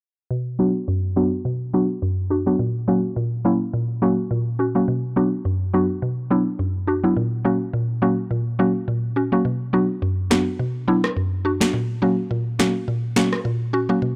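Hypnotic and sultry, this dancehall excerpt in B harmonic minor moves at 105 BPM with a light sixteenth-note swing, built on a woody, round FM synth pluck with a mallet-like attack and chorus that sits up front through a filter sweep from 0.3 to 14.2 seconds, alternating Bm and F#/A#, while a crisp, overdriven analog snare and rim click enters at 10.3 seconds in a dry, gritty recording.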